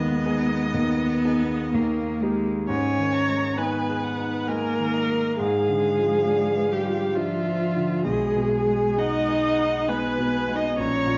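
Classical slow romantic movement for piano quartet in G# minor, solemn and elegiac at 67 BPM in a rubato 3/4, cut from a longer piece: a distant, expressive violin carries the melody with vibrato and portamento above a smooth, even cello second line, while a focused, up-front viola and a clear concert grand with deep bass and long sustain supply the accompaniment inside a dark, reverberant recital hall.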